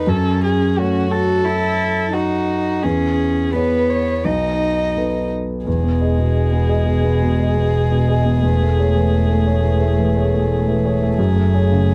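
A dark, lightly reverberant production frames this short neoclassical passage for piano and strings, cut from a longer piece and moving at 87 BPM in 4/4 with a rubato feel in E major, tuned to A4 = 439 Hz. The concert grand sits up front with a deep bass register, carrying the accompaniment, while a single bowed violin takes the melody close to the ear, its woody sul tasto tone coloured by vibrato. A lone cello plays a second line from further back, warm and pure, with soft attacks that leave it floating behind the violin. At 5.7 seconds a bowed double bass enters, rich and low, also played sul tasto. The harmony moves from F#m through C#m7/E and B7 into Emaj7 and Amaj7/E before reaching F#madd9, and the mood throughout is intimate and hopeful.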